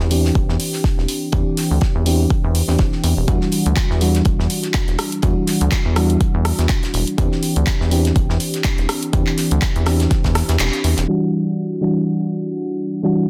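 Moody and late-night, this deep house excerpt sets soft, round FM electric piano stabs with chorus, sidechain pumping and tape echo over a rubbery, hollow square bass that pumps too, a deep, up-front electronic kick, dark-hatted handclaps and rim clicks from a deep house kit, and a faint dry, airy 70s kit of hi-hat and fat snare, before the kick drops out at 10.6 s on a band accent and the piano carries on alone from 11.1 s over Em9.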